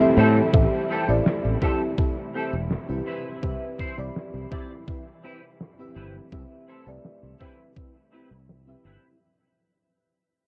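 A growly fretless electric bass sits up front in this woozy, dreamy vaporwave fragment at 83 BPM in C major, moving between Am7 and Cmaj7 beneath a soft, round FM electric piano coloured by phaser, lush chorus and analog delay. A thumpy, sampler-style electronic kick plays from 0.5 to 7.9 seconds, while an oversized, low-tuned kit with a fat, gritty snare and muffled hats sits in the background, along with a lush bowed string section roughened by 12-bit sampler grit. A twangy clean electric guitar riff with ensemble chorus and delay enters at 0.2 seconds, and the whole clip fades out under warbling cassette-tape pitch drift, light studio reverb and filter sweeps on the drums and strings.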